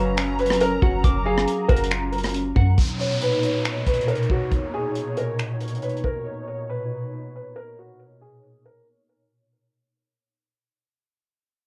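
Floating and dreamy, this excerpt from a longer piece is atmospheric cloud-rap at 138 BPM in a half-time 4/4 feel, set in B lydian with a moderate studio reverb and the character of a home cassette recording. A felt-muted upright piano carries the melody with an intimate, mellow tone, softened by a low-pass filter, tape coloring and analog delay, while a hollow, flute-like pad with a nasal, detuned edge holds sustained chords up front, breathing with ensemble chorus and sidechain pumping. In the opening stretch, a clean, twangy electric guitar picks arpeggios through tape and delay, and a deep, boomy 808-style bass with a sine-pure body, fast attack and decaying tone anchors the F#maj7 chord before both drop away at 2.8 seconds. A tight funk drum kit with a dark, rolled-off top plays finger snaps, hi-hat, kick drum and rim click from 0.2 seconds until about 6.1 seconds. As the harmony moves to Bmaj9, an electronic downlifter enters while a filter sweep and fade-out carry the piano and pad toward the close at 9.7 seconds.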